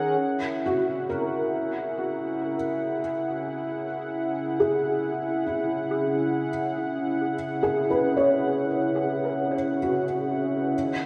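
A detuned sawtooth analog pad fades in with sustained, chorused chords, its slow attack giving it a warm, evolving presence up front, while a glass harmonica adds a pure, ethereal texture alongside it in this serene, reflective ambient excerpt in 3/4. At 0.7 seconds a felt-muted upright piano enters with intimate, boxy arpeggios, its action noise audible and its tone colored by ensemble chorus and analog delay. The whole mix is soaked in a lush hall reverb, and the music rests on a C# minor chord in a dreamy haze.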